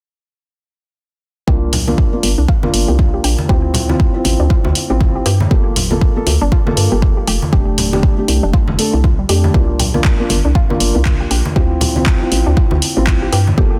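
Dense, heavily limited and set in a digital ambience, this late-night, moody deep house clip swings its sixteenths over an up-front, overdriven kick that sounds layered and re-recorded in a large room, with tape-warm handclaps and hi-hat from a punchy analog drum machine and ringing congas from a live room. A hollow, bouncy FM bass with tube saturation knocks beneath soft stabs from a felt-muted upright piano, boxy and intimate, as both pump against the kick and the piano trails analog delay. Sitting in the background, a warbly, dusty, detuned sawtooth pluck spins lo-fi arpeggios through chorus and delay across jazzy chords like C9sus4, Dm9 and Gm9, with the pluck, piano, bass and kick entering at 1.5 seconds and the drum machine and congas joining at 1.7.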